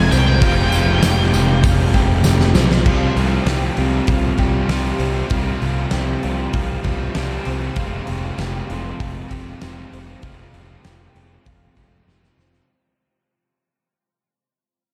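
A straight 4/4 pulse at 98 BPM drives this hazy, blissful shoegaze and dream pop rock excerpt, cut from a longer piece and bathed in a huge ambient reverb that leaves the mix dreamy and soaked. A big rock drum kit enters at 0.4 s with a dark, smooth big-room sound, a fat snare, a punchy kick, crash cymbal and hi-hat, while an up-front fuzz picked electric bass adds an overdriven, direct-and-amped low end. Beneath them, a crunchy overdriven guitar with reverse reverb and a lo-fi raw garage guitar with lush chorus play riffs in the background. A fingerpicked twelve-string acoustic guitar shimmers through arpeggios with a boxy, octave-doubled parlour tone, ensemble chorus and tape echo. The opening also brings a distorted octave-fuzz lead guitar melody with tape echo, a very quiet double-tracked semi-hollow guitar riff, and a jingly, saturated tambourine, all of which fall away by the time the harmony moves from Fmadd9 to Csus4 at 2.9 s. 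From that point the excerpt fades out, returning to Fmadd9 at 7.8 s, with drum fills marking the ends of both passages.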